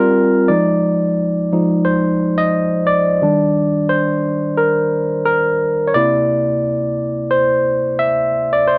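A late-night, soulful mood settles in with this short R&B passage, cut from a longer piece, moving at 88 BPM in 4/4 with a gentle swing on the sixteenths. A lone tine electric piano carries everything, playing solo from the start through 8.8 seconds across a range from C3 to E5. Its tone is bright and barky, lightly overdriven through a combo amp with a subtle chorus, and it sits up front in the mix. The harmony moves from Fm7 to Ebmaj7 at 3.2 seconds and then to C7 at 5.9 seconds. The sound has the dry, close feel of a 1970s-style studio recording, touched with light reverb.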